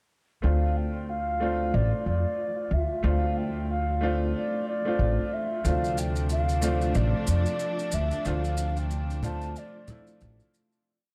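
Dark, cinematic trip hop at 92 BPM in D minor with a swung 16th-note feel, built on an up-front, woody pizzicato upright bass playing a dub-style line, held close-voiced chords with syncopated pushes from a bright upright piano treated with harmonic tremolo and tape echo, hook phrases on a distant, hollow baroque flute with vibrato and tape echo, and a very quiet grainy, flickering held high note, before a lush bowed string pad enters at 5.6 s and loose shaker and low conga join at 5.7 s, all in a dry, dark mix that fades out from 7.4 s.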